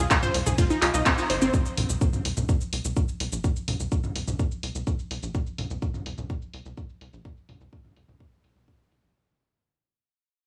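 Light reverb and a digital ambience frame this driving, hypnotic melodic techno fragment at 126 BPM in straight 4/4, opening on an Ab6 chord. A lush, detuned unison pluck with a noise layer spins arpeggios through sidechain pumping and digital delay until 1.5 seconds, above a tight, sawtooth-and-square sequencer bass that pumps along with it. A punchy, layered electronic kick and an analog drum machine with handclaps, hi-hat, ride cymbal, shaker and toms sit up front, and from 1.5 seconds the drums carry a filter sweep as the groove fades out through 9.2 seconds.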